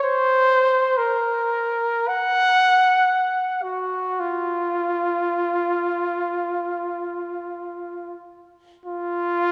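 Lonely and mournful, this short excerpt of expressive classical music features a single trumpet playing unaccompanied from 0.0 to 9.5 seconds, ranging from F4 to Gb5. The trumpet sits up front with a mellow tone, light vibrato and a smooth top end. A wet concert-hall reverb with a 2.4-second decay surrounds it, and the listener seems placed further back in the room.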